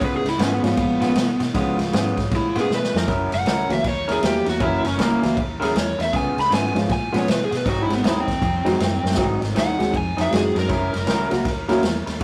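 An electric blues shuffle with a laid-back, rollicking swing, this short excerpt is cut from a longer piece and moves through dominant seventh chords. An overdriven slide guitar, played with fingerpicks, carries the melody as a solo from the opening moment, its tone warm and overdriven. Beneath it, an electric guitar through a small old amp plays a riff with a slightly broken-up, lo-fi, compressed sound bathed in spring reverb, while a foam-muted fingered bass gives a round, punchy low end. A vintage drum kit sits up front with a punchy kick, a medium-tuned snare and ride cymbal, its top rolled off, adding short fills around 2.7 seconds and again at 9.0 seconds. A dark upright piano enters at 0.6 seconds with mellow, woody, slightly detuned accompaniment, its action noise audible and its notes sustaining long, all within a rough rehearsal-room recording with tube saturation and moderate studio reverb.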